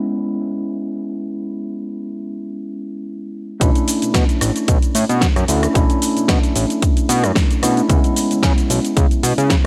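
Sleek and groovy, this nu-disco excerpt at 112 BPM in B dorian with a light 16th-note swing opens on a mellow tine electric piano carrying gritty 12-bit sampler texture, sidechain pumping and analog delay over a C#m7 chord, then after a break from 2.5 s the drop lands at 3.6 s on Bm11 as a fat, nasal, detuned analog bass, a punchy up-front electronic kick and a pop kit with a fat snare, metallic hats, rim click and shaker enter together, all set in light digital ambience before the harmony returns to C#m7 at 7.9 s.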